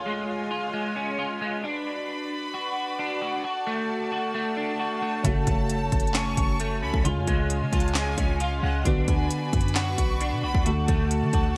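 Eerie and dark, this half-time trap excerpt at 133 BPM opens with a very quiet downlifter, soft-attack sustained strings and a bright, twangy, slightly broken-up guitar arpeggio treated with chorus, low-pass filtering and delay, before a dark, intimate grand piano with audible action noise, a deep, boomy 808-style bass, and up-front electronic drums with a hard-clipped kick, sharp snare, crisp hats, handclaps and gated reverb arrive around 5.2 seconds, joined moments later by a lush violin section with vibrato and delay, all in a bright 1980s-style digital production.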